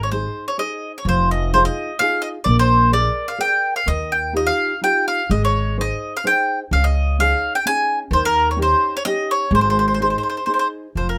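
In a rubato three-four sway, this romantic and lively Italian folk serenade places a bright, double-strung picked mandolin up front carrying the melody, over a dark, thumb-plucked classical nylon-string guitar and a thumpy, woody pizzicato upright bass, all three playing together throughout this brief passage from a longer piece, with a touch of light reverb.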